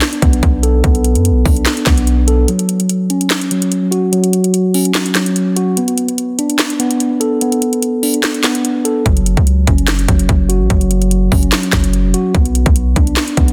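A mellow tine electric piano plays delayed arpeggios over a half-time trap kit of hard-clipped kick, sharp snare, handclaps and metallic hats in this melancholic, eerie hip hop fragment, with a deep, boomy 808-style bass entering at 0.2 seconds, dropping away for a break from 2.5 seconds, and returning at 9.1 seconds, all set dry in a dense, heavily limited modern master.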